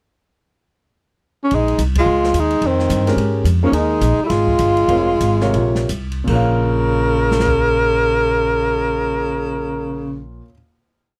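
Cool and spiritual, this short modal jazz piece opens with a pickup bar before a breathy, whispered tenor saxophone carries a motif-based melody with scooped notes, shadowed by a brighter tenor saxophone playing a harmony line mostly in sixths. A woody, pizzicato upright bass walks beneath, an open acoustic drum kit with dark cymbals keeps a ride pattern, and the band hits an accent at 1.9 seconds. A concert grand piano enters at 3.1 seconds with syncopated quartal comping and audible action noise, and the group slows from 3.7 seconds into a final minor chord, captured in a dry, close 1970s-style studio sound.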